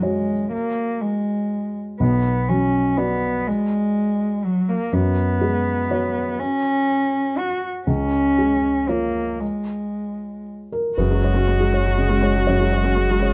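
Hopeful and tender, this neoclassical piano-and-strings piece in a rubato waltz metre opens with a felt-muted upright piano, mellow and intimate up front, beside a veiled con sordino cello carrying a second line with light vibrato. At 11.0 seconds a single muted violin enters on the melody with close, dark vibrato, joined by a soft-attacked muted viola in the background and a thick, saturated sub bass sustaining deep beneath. Light reverb gives the dark production a gentle sense of space, and the passage is cut from a longer piece.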